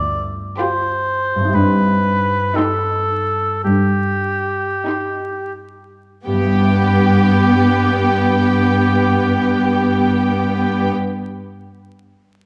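Classical and serene, this lyrical fragment of a longer piece drifts in a rubato 4/4 at 40-68 BPM in G major, slowing through its opening 6.3 seconds as the harmony moves from G7 to Cm/G before settling on G. A ringing, thumb-plucked concert harp spreads arpeggios alongside a distant, lush cello section holding the bass, while a mellow, up-front solo oboe carries a second line from the start. At 0.6 seconds a smooth, far-off high violin section enters with the melody, joined by a focused, clear second violin section and a close, rich viola section in accompaniment, all bowed with vibrato inside a moderate concert hall reverb, dark production and vinyl crackle.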